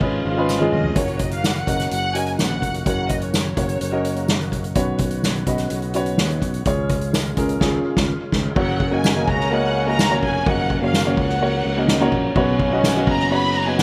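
Opening on a C# chord with lush violins, baby grand piano, a gritty overdriven tonewheel organ, growly fingered bass and a soft-mallet drum kit, this uplifting piano-driven pop excerpt in F# major moves at 126 BPM. A jingly tambourine enters alongside a drum fill at 0.5 seconds, and a band accent arrives at 7.6 seconds. A distant French horn section with slapback echo, heard briefly near the start, joins the returning violins from 8.6 seconds over a dry sound.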